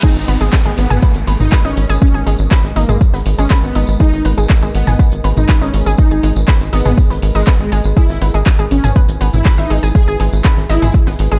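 An up-front, overdriven electronic kick drives this dark melodic techno drop at 121 BPM in G# minor. A tight, punchy sequencer bass pumps beneath it from 0.2 s. A metallic-hatted deep house kit and a faint, high-tuned acoustic jazz kit with shaker fill out the groove, along with a jingly, close tambourine. A reverse cymbal and downlifter sweep through until 4.0 s. Above them, a smooth, full-bodied supersaw melody with tape echo meets a round, nasal analog pluck arpeggiating through digital delay. A moody, warbling vintage pad enters at 1.2 s, sustaining chords from G#madd9 to E/G# in a dark, warm, nearly reverb-free mix.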